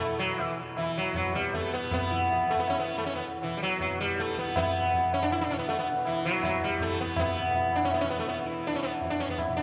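A sitar and tanpura open together with tabla in this meditative, introspective Hindustani fragment in E raga kafi, cut from a longer piece and set in a straight 7/4 at 160 BPM that speeds up across its 9.6 seconds. The plectrum-plucked sitar sits up front with a buzzing, shimmering tone ringing with sympathetic strings, while the bright, softly plucked tanpura drone hums in the background and the high-tuned tabla, with its short ring, sounds distant. A wet church reverb lends the whole a spacious, hall-like glow.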